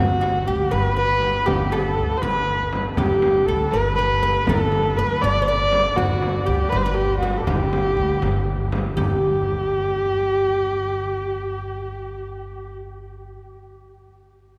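Hypnotic and soulful, this Persian modal ensemble piece in G dastgah mahur moves in a steady 6/8 at 80 BPM, cut from a longer performance and tuned to A4 = 436 Hz. A dark, up-front bowed kamancheh carries the melody with vibrato, soft attacks, portamento sliding and a smooth top, while a woody, double-strung fretless oud plays a deep second line in the background and a growly, thumpy pizzicato upright bass anchors the low end. A large, distant frame drum adds deep percussion until 9.2 seconds, as the music shifts into a new section at 9.0 seconds, and the whole ensemble sits in the long, wet reverb of a cathedral-like hall.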